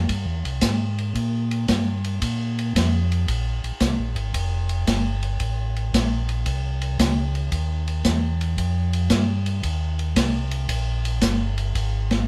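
A swung 4/4 groove at 113 BPM, with eighth notes swung at 68%, drives this smoky, soulful soul jazz organ trio passage in F minor, cut from a longer piece. A mellow tonewheel organ sits up front and carries the bass line from F1 to Bb2, its round, clean voice touched with key click and turned by a slow rotary speaker. Also up front, an open acoustic jazz kit adds a boomy kick, a medium-tuned snare, hi-hat and ride, with dark cymbals and a smooth, rolled-off top. The organ plays across the full 12.3 seconds, the kit joins at 0.1 seconds and drops out at 12.2, and the music moves into a new section at 8.6 seconds. Light reverb places the kit in a studio room.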